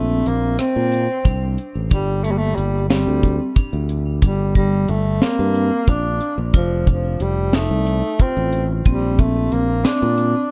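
Driving and tense, this short cut from a longer progressive instrumental moves in a straight 7/8 at 181 BPM in G minor, where a mellow, distant tenor saxophone with soft attack and classical-style vibrato carries the melody over plate reverb and tape echo, a background vibraphone struck with hard mallets rings out metallic arpeggios with slow motor vibrato and its own tape echo, a bright, growly fingered electric bass sits up front, and a dry, deep reggae drum kit with a high-tuned snare, tight kick, rim click and hi-hat enters at 0.3 s, all within a dark production as the chords move from Bbsus2 to Gm and F.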